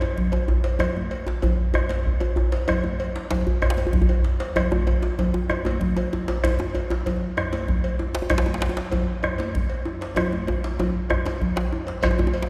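Festive and driving, this short excerpt from a longer piece is a West African traditional drum ensemble moving at 128 BPM in a straight 12/8. A deep, dark bombo sits up front as the weightiest voice, joined by two medium-tuned djembes: one close, dry and forward, the other with a vintage, band-limited character and hard-hand attack. Bright, high-tuned congas with a thin-skinned snap add another hard-hand layer, while a metallic cowbell rings through, all of them playing almost from the first moment to the end. Drum fills break in from 3.8 to 4.6 seconds and again from 10.2 to 12.0 seconds. A grainy, mellow shekere appears only briefly in the background at 12.0 seconds. The whole ensemble is heard within the long, wet reverb of a church or concert hall.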